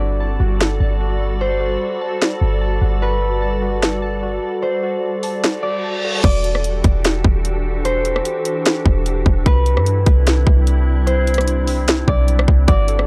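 A floating, blissful stretch of atmospheric cloud-rap hip hop, cut from a longer piece, moving at 149 BPM in 4/4 with a half-time feel in G major, tuned slightly below standard pitch. A ringing concert harp carries the melody through a low-pass filter and tape echo, while a glassy FM pad holds ethereal, slow-blooming chords with ensemble chorus, its own reverb and sidechain pumping, moving from Gmaj9 to Em11 at 6.2 seconds and Cmaj9 at 9.5 seconds. Soft, round electric-piano-like synth keys add gentle arpeggios with chorus and tape echo, dropping out at 6.2 seconds and returning only for the final moments. Underneath, a clean, deep 808-style bass booms up front, and a trap drum kit enters at 0.6 seconds with a hard-clipped, overdriven kick, sharp snare, bright hi-hats, rim clicks and crash. Just before the chord change, the kick mutes and an up-front reverse cymbal rises from 5.6 seconds into the new section, all captured with a dry, gritty cassette-tape character.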